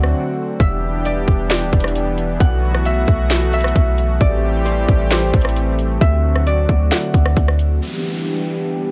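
Atmospheric cloud-rap hip hop in E minor at 133 BPM with a half-time feel, this melancholic, hazy excerpt sets a fingerpicked, ringing Celtic harp melody with tape echo over a smooth, detuned sawtooth pad with chorus, sidechain pumping and a low-pass filter, a deep, boomy 808-style bass with transformer saturation, and an up-front trap kit of hard-clipped kick, sharp snare, rim click and metallic hats, moving through D7, Em7, B7sus4 and Am7 before the drums stop at 7.7 seconds and a downlifter and pad filter sweep close the dry, gritty cassette-tape recording at 8.9 seconds.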